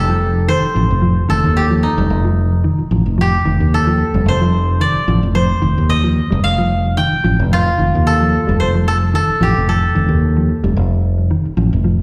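A woody koto melody, played with fingerpicks and carrying plate reverb and slapback echo, opens this hypnotic, driving afrobeat piece at 111 BPM in F mixolydian, alongside an up-front, direct and amped fingered electric bass over a single F7 chord with a lightly swung sixteenth-note feel. From 0.1 seconds, a dark, clean mellow electric guitar adds arpeggios coloured by analog chorus, slapback echo and tape echo. The sound is that of a live gig heard through the venue's PA with recital hall reverb, and the passage is cut from a longer piece.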